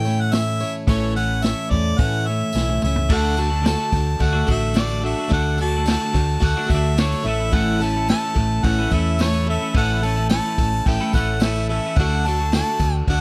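A dry, close 1970s-style studio sound frames this nostalgic, jangly folk rock and heartland rock excerpt in a straight 4/4, moving between A and D chords. A clear harmonica with light vibrato and scooped notes carries the melody over a boxy, freshly strung swing-style acoustic guitar and a twangy, compressed twelve-string electric guitar riff bathed in spring reverb, while a round, hollow-body electric bass holds the low end. A vintage drum kit with dark cymbals and a punchy kick enters at 0.3 seconds and plays a fill from 2.5 to 3.1 seconds, with a faint, jingly tambourine in the background.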